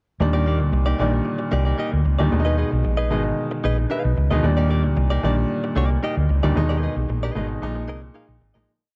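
Danceable and celebratory, this short disco piece in Eb major at 113 BPM sets a round, hollow-body fingered electric bass up front with a syncopated line and chromatic approach notes, beneath a clear baby grand piano pushing drop2 chords with grace notes and a brief fill at 3.6 seconds, and a bright, twangy, direct-recorded clean electric guitar chopping sixteenth-note figures, inside a dark production with light reverb that fades out from 6.6 seconds.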